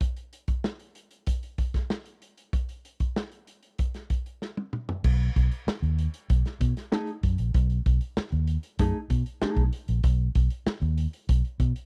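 A crunchy, gritty breakbeat drum kit with dark cymbals and a punchy kick opens this energetic, playful funk excerpt at 96 BPM in B mixolydian, rolling into a fill just before a round, foam-muted fingered electric bass enters at 5.0 seconds on a B chord, while a mellow, clean, compressed electric guitar adds brief accompaniment from 6.9 to 9.6 seconds in a dry, close 1970s-style small-room sound.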